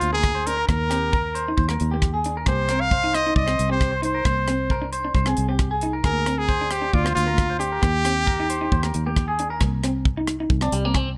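Bittersweet and danceable, this highlife guitar band cut moves at 134 BPM in C minor over a straight 4/4 feel, with a light reverb and small-room ambience. An up-front, punchy trumpet carries the jazz-style melody with light vibrato and scooped notes until 9.1 seconds, over a slightly broken-up, twangy guitar through a small old amp and a clean, compressed second guitar whose picked arpeggios ring through tape echo. A round, foam-muted fingered bass and a dry, tight funk drum kit of hi-hat, kick and rim click drive the groove, and at 9.6 seconds the clean guitar steps forward for a brief solo.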